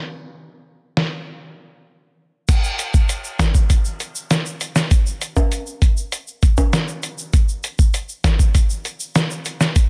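Tough and bouncy, this dancehall excerpt at 99 BPM in a straight 4/4 opens on a muffled, compressed lo-fi sampler-style drum kit with a thumpy kick, fat snare, hi-hat and crash carrying vintage 12-bit grit up front from 1.0 seconds, breaks at 1.3 seconds, and at 2.5 seconds gains a small-room tube shaker and timbales sitting low beneath it, all within a digital ambience and a dense, heavily limited modern master.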